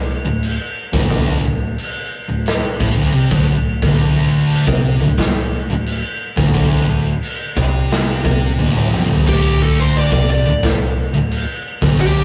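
A rough rehearsal-room recording with warm saturation and light reverb carries this brooding, heavy stoner and doom metal passage at 88 BPM in straight 4/4, cut from a longer piece. A thick, double-tracked fuzz guitar grinds out the low riff up front, joined by a very quiet, round hollow-body bass and a big, natural-sounding rock kit with a punchy kick, medium-tuned snare, toms and crash. After a drum fill from 8.6 seconds, a dark, compressed fuzz lead guitar enters at 9.3 seconds with a solo that runs to the end.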